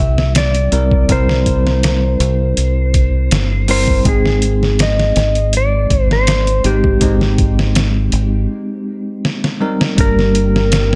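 Trip hop with a brooding, melancholic mood, where a clean, slide-voiced lap steel carries the melody through tape echo over a bell-like tine electric piano shimmering with harmonic tremolo, a round, punchy dub bass and a gritty, pitched-down sampler drum kit with a thumpy kick, breaking at 8.5 seconds with a drum fill at 9.2 seconds before mellow string-machine cellos enter in the background at 10.0 seconds.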